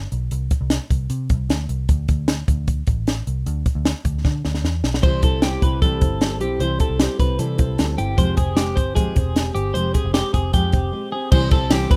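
A dark, round, foam-muted picked electric bass opens this breezy, bright jangly indie pop excerpt at 153 BPM in C major, joined at once by a dry compact cocktail drum kit with a punchy kick, a high-tuned snare and dark cymbals, and after a drum fill, at 5.0 seconds, a full-bodied fingerpicked steel-string acoustic guitar and a clean, compressed twelve-string electric guitar playing arpeggios through spring reverb and tape echo enter over C and Fmadd9 chords, before a short break and a very quiet, jingly tambourine at 11.3 seconds, all in a rough home demo mix with little reverb.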